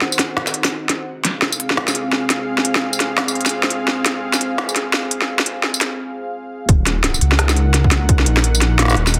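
Half-time drum and bass at 171 BPM in Eb dorian, cinematic and dark, opens with a moody, full-bodied analog pad sustaining Ebm and Fm chords through chorus, 12-bit sampler grit and sidechain pumping beneath an up-front electronic kit of woody, softly clipped snare, crisp hats and tambourine re-recorded in a small room, building to a break at 6.0 seconds before the drop at 6.7 seconds brings in a deep, rumbling detuned saw bass and a hard-clipped, tape-warm electronic kick that plays until 8.2 seconds, framed by a moderate digital room reverb on a dense, heavily limited modern master.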